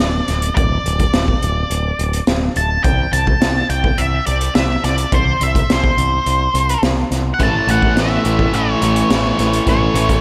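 Driving and swaggering, this classic rock passage in a straight 4/4 is cut from a longer piece and opens with a dark, fuzzy octave-fuzz lead guitar carrying the melody, distorted and treated with slapback echo, up front beside a growling picked electric bass running through overdrive. A raw garage drum kit joins at 0.3 seconds on hi-hat, kick and snare, its high-tuned snare and punchy kick sounding gritty and saturated, with a rolled-off top and a small-room character. The opening stretch holds off any chord until 7.4 seconds, when the harmony lands on A and three more guitars arrive together. A bright, crunchy overdriven guitar and a hollow-body semi-hollow guitar, the latter sitting further back, both pick out the riff with slapback echo, while a boxy picked swing-style acoustic guitar adds very quiet accompaniment. A moderate concert hall reverb with a 2.4-second decay gives the whole a big arena sound.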